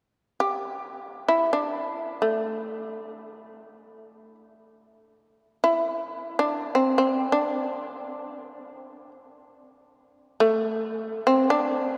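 A lone shamisen enters at 0.4 s, its plectrum-plucked, fretless voice sounding percussive and buzzing, placed up front and moving between A3 and G4 in a D suspended pentatonic mode, tuned to A4 = 442 Hz. This austere, calm passage of traditional Japanese chamber music unfolds in free time, a short fragment lifted from a longer piece. A wet cathedral reverb with a 5.1 s decay surrounds the instrument, setting each note in a vast, echoing space.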